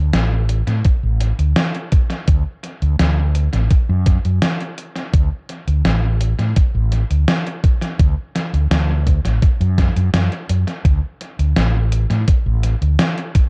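A warm, amped fretless electric bass sits up front from the start, moving between A1 and A2 in D major at 84 BPM in a straight 4/4, giving this dreamy, faded vaporwave excerpt its center. A gated 80s digital drum machine enters at 0.1 seconds with sampler-style hi-hat and a gated reverb snare soaked in tape echo, and a thumpy electronic kick joins at 0.8 seconds, both re-recorded in a large room. The echo-heavy mix, light reverb and cassette tape character, tuned slightly flat to A4 = 437 Hz, lend the whole a hazy, worn quality.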